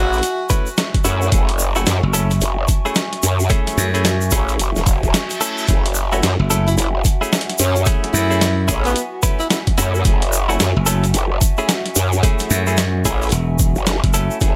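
A digital-sounding mix with a playful, gritty mood carries this glitch hop cut, taken from a longer piece, at 110 BPM in 4/4 with a swung sixteenth-note feel in F# minor over a single F#m9 chord. Up front, a knocking, overdriven electronic kick sits with a wobbling growl bass shaped by a formant filter, chorus and overdrive, while a punchy, direct slap bass joins shortly after the start. A pitched-down, sampler-style kit supplies hi-hat and a medium-tuned snare heard in a large room, and a grainy tube shaker adds bright, saturated texture. Clean electric guitar stabs, recorded direct with 12-bit sampler grit, sidechain pumping and digital delay, play throughout, as a nostalgic, detuned tape-like pad warbles in the background with chorus, reverb and its own pumping. A close-miked tenor saxophone with vibrato, a soft attack and digital delay takes a short jazz-style solo from 6.7 to 9.6 seconds, and a reverse cymbal sits faintly in the background around 4.9 seconds.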